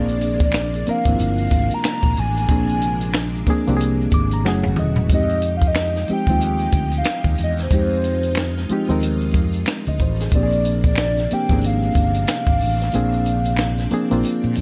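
A hollow, woody clarinet-like synth lead carries the melody through chorus, phaser and tape echo over a reedy, slightly out-of-tune electric piano, shimmering vintage string-machine violins and a growly fretless bass with lush chorus, as a dry cocktail drum kit with a high-tuned snare and a close tube shaker with finger snaps join in this soulful, late-night neo-soul R&B cut at 92 BPM with a 16th-note swing, where an electric piano fill from 3.8 seconds meets a drum fill at 4.4 seconds before the kick drops out at 12.9 seconds, all in a light reverb.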